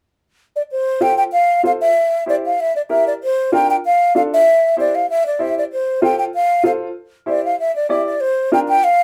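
An airy, hollow concert flute opens this joyful, sunny Latin fragment at 0.6 s with a soft-attack melody touched by vibrato, and at 1.0 s a woody, natural-sounding upright piano joins up front with short-sustained accompaniment, the pair set in a small room's moderate reverb.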